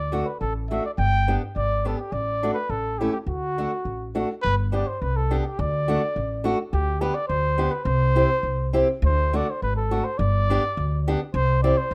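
Festive and jolly, this short alpine folk excerpt in a loose, rubato 2/4 sets a dark, softly attacked trumpet with light vibrato and a smooth top singing a classical-style solo melody up front, over a woody pizzicato upright bass and a warm fingerpicked steel-string acoustic guitar, with the trumpet and guitar touched by plate reverb in a rough home-demo mix that moves from one section into a second at 4.4 seconds.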